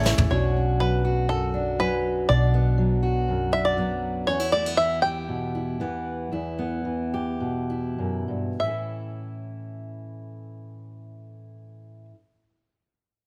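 A twangy, percussive banjo played with fingerpicks opens this short folk fragment, carrying the melody up front. Beside it, a dark, round and punchy hollow-body electric bass sounds its amped low notes only until 4.2 seconds. A fingerpicked dreadnought acoustic guitar with fresh strings joins almost at once, giving a full-bodied accompaniment close to the listener. The mood is anthemic and warm, moving from Bmadd9 into Em as the tempo slows between 4.3 and 8.6 seconds. It then settles on an A chord for the closing section, with light reverb and a small-room ambience around the whole performance.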